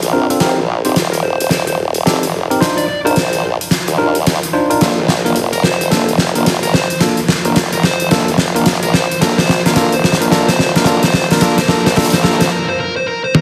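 A dense, heavily limited modern mix sits in a moderate plate reverb, with a big acoustic rock kit pushed up front, its fat snare, hi-hat and toms ringing in a bright stone room. This playful, swaggering glitch hop excerpt in 4/4 swings its sixteenths and is cut from a longer piece, playing out as one extended build-up with a drum fill running beneath almost the whole stretch. A formant-sweep wobble bass growls low, mixing sawtooth and sine tones through a formant filter, with a fast attack, sustained compressed body, chorus and tube saturation. Clean, bell-like tine electric piano stabs sparkle over chords moving from F9sus4 through Cm11, Gm7, Bbmaj7 and F7sus4 to C9sus4, touched by a low-pass filter and delay. From 1.1 seconds a dark, smooth lead guitar carries the melody, picked and overdriven with delay, as a filter sweep moves across it throughout. A brief break arrives at 12.5 seconds, where the bass drops out and the drums and guitar ring on to the end.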